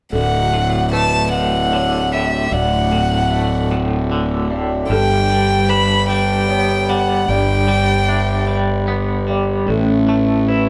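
A slow, straight 6/8 pulse at 50 BPM in dotted quarters carries this euphoric, cinematic rock passage in D major, cut from a longer piece and moving from Dadd9 to Gadd9 at 4.9 s and Aadd9 at 9.7 s. Up front, a fuzzy, overdriven fingered electric bass sits round and punchy in the low end, while a rich, close violin sings the melody with light vibrato and an airy sul tasto bow until 8.5 s. Beneath them, a bright, clean twangy electric guitar picks arpeggios through tremolo, a felt-muted upright piano adds mellow, vintage arpeggios in the background, and a reedy, breathing pedal harmonium holds sustained chords, all as a band playing live in one room with a wet large-studio reverb.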